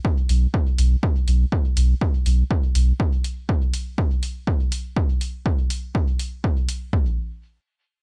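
The rhythm sits at 122 BPM in 4/4 with a light 16th-note swing, anchored by a punchy analog drum machine whose kick and toms sound up front and carry the air of a small room. This short dub techno cut, taken from a longer piece, feels meditative and nocturnal. A soft, round sub bass enters at 0.3 seconds, deep on B1 with a fast attack and sustained tone, pumping with sidechain compression before it drops away at 2.9 seconds. An electronic hi-hat, layered and overdriven, runs alongside the drums until 6.8 seconds, sitting quietly in the mix. The sound is dry and close, and the opening section gives way to a brief closing passage at 6.9 seconds.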